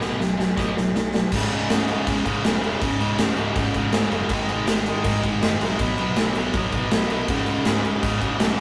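Urgent and angry, this short punk rock excerpt charges ahead at 161 BPM in a straight 4/4. A big rock drum kit opens with a fill over the first 1.3 seconds, its punchy kick, medium-tuned snare and bright cymbals sitting up front in a big room with crash accents. An overdriven, double-tracked electric guitar drives a picked riff over B5, C#5 and G#5 power chords, its edge bright and forward in the mix. Beneath it, a growly, direct picked electric bass holds the low end from the background. Light reverb and tube saturation give the whole thing a rough rehearsal-room feel, and the guitar rings on briefly after the bass and drums stop at 8.5 seconds.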